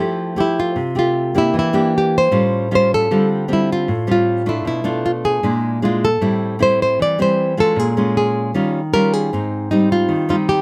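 Romantic and sophisticated, this short bossa nova passage is cut from a longer piece and moves with a straight feel in four. Two nylon-string guitars, both fingerpicked in a classical manner and sitting up front, play together from the start at 0.0 seconds to the close at 10.6 seconds. One carries the melody in a compact middle register while the other supplies the accompaniment, reaching down into the low bass. The harmony travels through rich extended and altered chords, opening on Fmaj9 and drifting toward Abmaj7 by 9.3 seconds. Close, detailed microphones capture the acoustic tone of each guitar, set in a light reverb.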